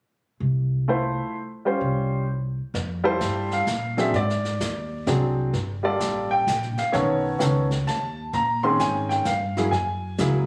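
Sophisticated and warm, this short jazz piano trio excerpt swings in 3/4 at 129 BPM, with pizzicato upright bass entering at 0.4 seconds and a bright, brilliant upright piano carrying the melody from 0.9 seconds, both woody and up front. A brushed drum kit with a medium-tuned snare and boomy kick joins at 2.7 seconds as the harmony moves through rich extended chords such as Fmaj9, Ab7#11 and Bbm11. The sound is a phone recording in the room, with club reverb and compression.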